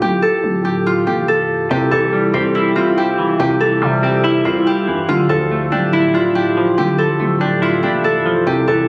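A ringing, fingerpicked concert harp carries the melody up front in this wistful, dreamy trap cut from a longer hip hop piece, moving at 142 BPM in 4/4 with a half-time feel over chords of D5, C and Dmadd9. Beneath it, a growling, buzzy 808-style bass with a fast attack and decaying tail anchors the low end, and at 1.7 seconds a clean, hollow-bodied semi-hollow electric guitar joins with compressed, fingered accompaniment treated with analog chorus. The whole track sounds as if captured on a phone in the room, with light reverb and a club-like ambience.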